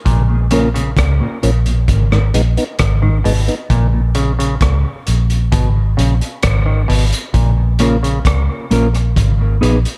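A vintage muted fingered electric bass, dark, round and foam-muted, sits up front in this heavy, hypnotic dub reggae cut at 66 BPM, cycling between A#m and G#m over a crunchy breakbeat kit whose gritty, saturated hi-hat, tight kick and rim click have a rolled-off top. A stringy, percussive clav plays arpeggios through phaser and dub echo until 8.2 seconds, while a mellow tonewheel organ with chorus vibrato and a slow rotary speaker fills in from 0.3 to 4.0 seconds. A clean, fingered electric guitar with dub echo flickers briefly near the start and returns at 7.8 seconds, set in a small room with light reverb.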